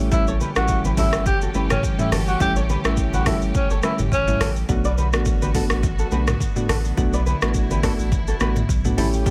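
A 105 BPM afrobeats groove in 4/4 with a light 16th-note swing, set in B minor and moving from A7 to Bm7 at 4.7 seconds, carries a hypnotic, mellow mood as an overdriven, up-front electronic drum kit with deep kick, metallic hats, rim click, shaker and toms joins very quiet low-tuned congas over a round sine sub bass, soft chorused electric-piano-like synth keys and a bowed string section sitting in the background, while a breathy, whispered tenor saxophone with scooped notes and tape echo sings the melody until 4.5 seconds and a fingerpicked acoustic flamenco guitar plays an echoing riff throughout this short cut from a longer piece.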